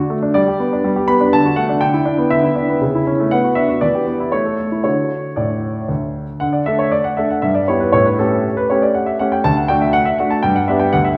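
A clear grand piano plays alone throughout, its sound present and up front, reaching from D2 up to B5 in this playful, elegant classical-period sonatina. Set in D major and in 3/4 at 119 BPM, the music moves with a supple rubato feel. The opening phrase travels through G, D, Em7/D, A/C#, Bm, Em and A before settling on D around 4.9 seconds. A second section begins at 6.4 seconds, passing through Em/G and A7 back to D, then reaching G near 10.4 seconds. A wet recital hall reverb, lasting about 1.6 seconds, surrounds the instrument. The passage is cut from a longer piece and runs 11.2 seconds.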